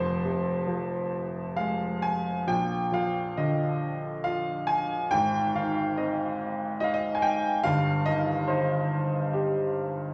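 Dark and reflective, this brief cut from a longer classical piece features a solo grand piano in C minor, moving in a lyrical, rubato 3/4 at around 65-74 BPM through Fm, Bb, Ab and Cm/G, its clear, open tone with long sustain placed up front in a moderate recital-hall reverb and colored by the warbling pitch drift of worn old cassette tape.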